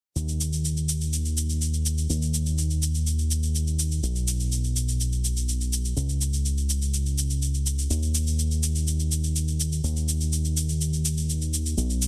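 A fat, detuned sawtooth bass and an electronic, layered shaker enter together at 0.2 s and carry this driving, bittersweet progressive house excerpt at 124 BPM in a straight 4/4. The bass sits up front in its low register with a fast attack, decaying notes and a filter sweep, while the produced shaker also sits up front until both stop at 12.1 s. The sound is dry and dense, with a heavily limited modern master.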